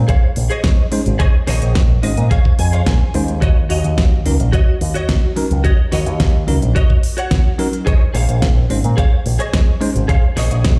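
Nu-disco at 108 BPM in Eb dorian, sensual and sleek, where an up-front knocking electronic kick and a pop kit with fat snare and crisp hats sit under a punchy picked bass through an envelope filter, while a bright, compressed clean guitar riff with ensemble chorus and slapback echo adds a fill at 1.8 seconds and a bell-like tine electric piano, pumping under sidechain and low-passed, enters at 0.9 seconds over Bbm11 and Ebm7 chords in a large studio reverb.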